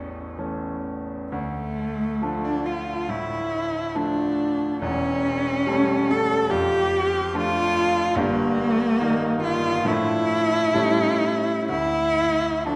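Romantic classical music for cello and concert grand piano, this yearning, solemn passage in D minor moves at a rubato 69 BPM, with a close, expressive cello carrying the melody in a warm, soft-attacked voice rich with vibrato and portamento, while the bright, brilliant piano accompanies with deep bass and long sustain through a chord path that touches Eb/G before settling on A7, all bathed in a wet concert hall reverb until the music breaks off at 12.8 seconds as part of a longer piece.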